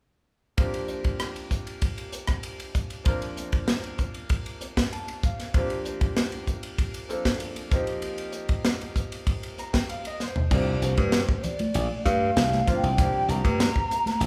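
A bright grand piano, with audible action noise and long sustain, opens this driving, slick electric jazz fusion excerpt at 0.6 s over C9sus4 and F9sus4 chords, alongside a tight, polished funk drum kit sitting up front. The piano adds fills along the way, and a short drum fill leads into the next section at 10.5 s, where a hollow, vibrato-laden concert flute takes the melody and a glassy, punchy slap bass joins. High-tuned congas with thick skin come in at 11.0 s in the background, all set in a moderate large studio reverb that sounds like a band playing live in one room.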